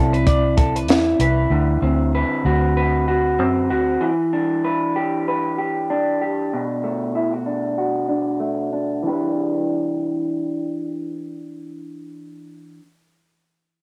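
A swung 96 BPM groove in 4/4 opens this wistful, mellow indie and bedroom-pop excerpt from a longer piece, with a dry compact cocktail drum kit of hi-hat, punchy kick and high-tuned snare that stops at 1.4 seconds, a dark, round, foam-muted vintage fingered electric bass that plays until 4.0 seconds, and an up-front, slightly broken-up electric guitar through a small old amp, coloured by subtle chorus, warbly pitch drift and a filter sweep, carrying the E minor changes through Cmaj9, D6, Em7 and Bm7, all captured at home on cassette with light reverb and small-room ambience.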